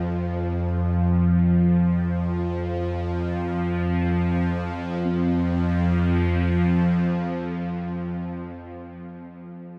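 In free time, this unsettling, cavernous dark ambient drone, cut from a longer piece, sets a tense, bright, string-like sawtooth drone up front, thick with phaser, vibrato and its own reverb and settling onto an F5 chord at 5.0 s, while a soft, mellow gamelan-type bronze metallophone played with padded mallets spins airy, shimmering arpeggios through tape echo in the background, both parts sounding from 0.0 to 8.2 s inside a huge, wet reverberant space with a 7.4-second decay.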